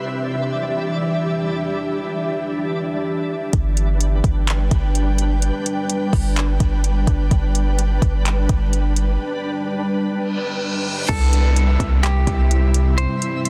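An ethereal, airy pad of detuned sawtooth and triangle voices with a sub octave holds sustained chords from the first moment, thickened by ensemble chorus and reverb and gently pumping against the beat in this floating, blissful excerpt of atmospheric cloud-rap. Beneath it, a twinkling granular texture adds a faint, sparkling octave-up shimmer. At 3.5 s the harmony moves from Em7 to G as a deep, boomy 808-style bass with a quick, decaying attack arrives alongside a smooth R&B drum kit in a half-time feel, its soft kick, handclaps, metallic hi-hats and crash sitting up front. During a break that begins at 9.2 s, an electronic reverse cymbal and downlifter sweep through the background. At 11.1 s the chord turns to C and a clean, fingered semi-hollow electric guitar enters with a short, compressed melody trailed by tape echo. The mix is dense and heavily limited, set in a digital ambience.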